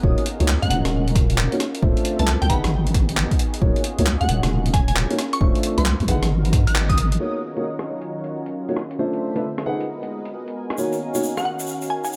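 Moody and bouncy, this swung two-step UK garage excerpt at 134 BPM in Eb minor layers dark, boxy grand piano stabs and a glassy, crystalline wavetable pluck melody with cassette-tape grit and analog delay over a smooth, detuned analog pad and a warbling, nostalgic lo-fi pad, both pumping in the background, while a deep wobbling bass and a punchy electronic kick anchor the low end until 7.2 and 7.0 seconds, a gritty, compressed sampler-style breakbeat kit of handclaps, filtered hi-hats and rim clicks carries on, and a grainy, distant tube shaker joins at 10.8 seconds in a lightly reverberant, echo-heavy mix.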